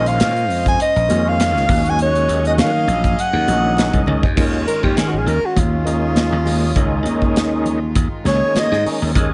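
A breathy, close-miked soprano saxophone carries the melody and takes a solo from 4.4 seconds in this funky, slick electric jazz fusion excerpt at 100 BPM in Eb dorian with a swung 16th feel, backed by a gritty overdriven tonewheel organ with key click and slow rotary speaker, a growly, punchy slap bass up front, an acoustic studio drum kit with a pumping room sound and a fill at 4.1 seconds, bright high-tuned congas, and a dark, reedy chamber string section sustaining chords in the background over Bbm11, Ebm11 and Eb9sus4 harmony, set in a small room with light reverb.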